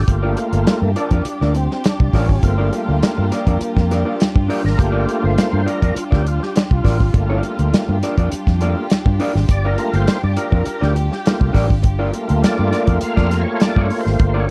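A dark, warm, small-room sound frames this driving, sly funk excerpt in G minor at 102 BPM, where a gritty overdriven tonewheel organ with key click, chorus vibrato and slow rotary speaker takes the solo in stabs over a Gm7 chord, backed by a round, foam-muted electric bass and a dry, tight soul drum kit up front, a clean hollow-body jazz guitar comping from 0.1 s, and warm sul tasto strings holding bowed chords beneath.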